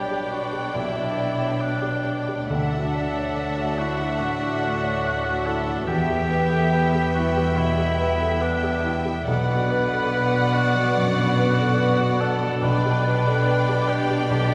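A solo cor anglais sits up front with a warm, vintage tone and light vibrato, carrying the melody in a classical style through this moving, longing passage of cinematic film score, cut from a longer piece. A lush violin section shares the melody, while a second, more distant violin section plays a supporting line. A clear, polished grand piano provides accompaniment alongside a smooth, even viola section in the background. A very quiet concert harp adds mellow, ringing, thumb-plucked arpeggios, and a close, focused cello section anchors the bass with rich bowed vibrato. The rubato pulse moves through G/B, Dadd9, Em and Bm before returning to G/B near 12.6 seconds, all bathed in the long, wet reverb of a church.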